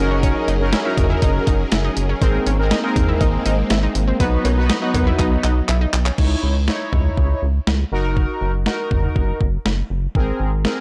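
A dry, gritty hardware recording with cassette-tape character and digital ambience carries this cool, nocturnal synth-pop excerpt in C# dorian at 121 BPM, where an up-front rubbery, hollow square bass and a thumpy, sampler-style 12-bit drum machine with cowbell, handclaps and toms drive beneath fat, detuned analog synth brass with chorus, while vintage string-machine violas and a round, warbling analog pluck with delay fill the opening until about 6.2 seconds, just after a drum fill from 5.2 seconds leads into a new section.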